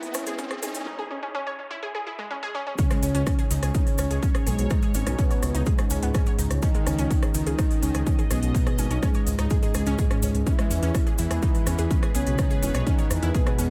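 A steady, straight 4/4 pulse at 125 BPM drives this hypnotic, melancholic melodic techno excerpt in C# minor, where a short build-up of a heavy, up-front electronic kick, smooth hi-hats, rim clicks, a distant grainy cabasa, a riser and a lush, warbling unison pluck arpeggio gives way at 2.8 seconds to a drop anchored by a menacing, saturated detuned saw bass. An expressive, dark synth lead with vibrato carries the melody over a full-bodied sweeping resonant pad, while a fat, bold polysynth adds a second line in the background as the chords move from E to C#sus2 and back to E. The pumping sidechain on the synths and the tape echo give the light, reverberant mix a spacious, echo-heavy feel.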